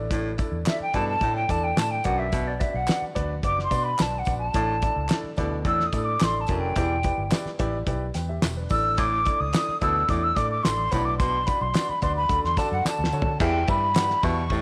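Set in a small room with light reverb, this uplifting cut from an uptempo 1960s-style soul tune has a breathy, hollow jazz flute soloing from 0.7 s over clear grand piano, a round, foam-muted fingered electric bass, a subtoned baritone saxophone riff with vibrato, a cloth-damped thuddy drum kit with a fat snare and dark cymbals that plays a fill at 12.9 s, and tambourine and handclaps in the background.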